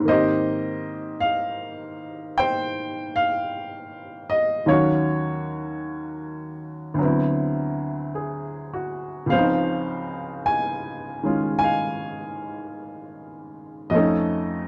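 Jazz ballad with a melancholic, smoky mood, taken from a longer piece, moving at a slow swing in 4/4. A lone upright piano carries the whole 14.7 seconds, its tone brilliant, woody and open, sitting up front and spanning Db2 to Ab5 through lush chords such as Abmaj9, Ebm7, D13 and Dbmaj9 before resting on F7b13. A moderate club reverb surrounds it within a dark production.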